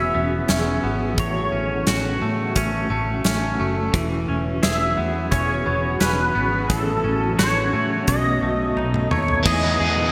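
A pedal steel guitar carries the melody from the very start, its clean, fingerpicked slide tone gliding through volume swells and trailing an ensemble chorus and digital delay, while a granular cloud pad holds blurred, evolving chords underneath. This dream pop excerpt feels blissful and floating, moving at an unhurried pace in straight 4/4. A twangy, compressed electric guitar picks bright, clean arpeggios with subtle chorus and delay, and a foam-muted fingered electric bass adds a dark, round low end. At 0.5 seconds a huge arena drum kit enters, its punchy kick, bright cymbals and gated reverb filling a pumping room, and a drum fill near the end leads to a resolving Emaj7 at 9.5 seconds. Just before that, at 9.4 seconds, a biting overdriven guitar steps up front with harmonic tremolo and lush chorus, all set in a lush hall reverb with a glossy 1980s-style digital sheen.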